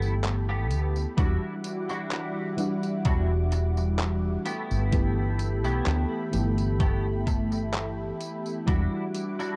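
A woozy, hazy vaporwave groove in E minor opens at once with an FM electric piano, its soft pad layer glinting with a fast attack and decaying tail through phaser, subtle chorus and analog delay, over a thick, detuned unison pad that holds sustained chords under its own chorus and phaser. A bright, clean semi-hollow electric guitar picks a compressed riff washed in ensemble chorus and analog delay, while a woody fretless bass sits up front with a growly, round tone and lush chorus. At a slow 64 BPM in 4/4 with a light swing on the sixteenths, a detuned 8-bit drum machine ticks out handclaps, hi-hat and tambourine, overdriven and roughened with vintage 12-bit sampler grit. At 1.2 seconds a thumpy electronic kick drum enters with the same overdrive and grit, carrying the beat until the bass and kick stop at 8.9 seconds. The harmony drifts between G6/9 and Em9, and the whole track sits in a dark, warm production with digital ambience, cut from a longer piece.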